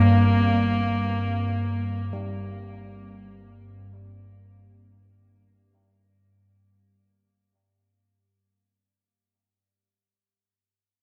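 Soaked in a huge, dreamy reverb, this dark, desolate ambient drone fragment sets a clear, husky bowed horsehead fiddle with vibrato, portamento and tape echo over an up-front, nasal organ-like drone and an airy, sweeping resonant pad in the background, with a fade-out running to 4.9 s, while gamelan-type bossed gongs enter at 2.1 s with bronze, beating arpeggios that ring on to 9.3 s.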